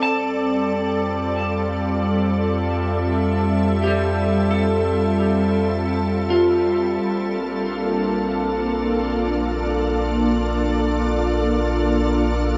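A bright, organ-like pad with ensemble chorus sits up front, holding sustained Fmaj9 and Bbmaj7 chords in this peaceful ambient passage, while a clean, twangy electric guitar plays picked arpeggios in the background through lush chorus and diffuse delay until 9.4 s, and a deep, round sine sub bass fades in underneath, all heard in a vast, echoing cathedral space captured on cassette tape.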